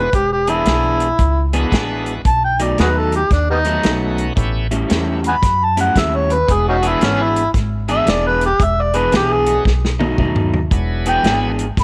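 An overdriven, gritty harmonica leads this rollicking, swaggering electric blues shuffle, soloing up front throughout with tongue slaps, scooped notes, light vibrato and a jazz-inflected phrasing. Beneath it, a woody, thumpy pizzicato upright bass sits close, alongside a warm soul drum kit with a tight kick, a medium-tuned snare and a rolled-off top, which plays a fill from 9.7 to 10.7 seconds. An electric guitar through a small old amp enters at 0.5 seconds with a dark, slightly broken-up picked riff, while a bright, shouting tonewheel organ fills in the accompaniment with key click, light overdrive and a slow rotary speaker. The changes move from E7 through B7 and A7 before returning home to E7, and the whole band sits in light reverb and small room ambience. This swinging fragment is cut from a longer piece.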